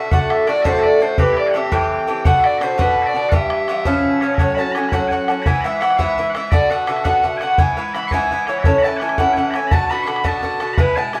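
Recorded live in one room with a wet studio reverb, this short cut of a wild, dark and lively Celtic jig in 6/8 features an airy, mellow wooden baroque flute carrying the tongued, expressive melody with vibrato from a distance, piercing, bright bagpipes holding a continuous second line, a warm, metallic Irish bouzouki picked on double strings up front, and a tight, damped bodhran played close.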